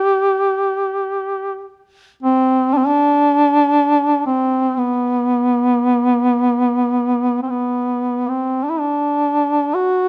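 A close, detailed recording with light reverb places a mellow duduk up front, its vibrato-laden folk voice carrying a solemn, longing Caucasian lament. Played solo in a free, rubato triple metre, the line moves within a modest low-to-middle range, shifting to a new phrase at 8.6 seconds before this short cut from a longer piece ends at 10.1 seconds.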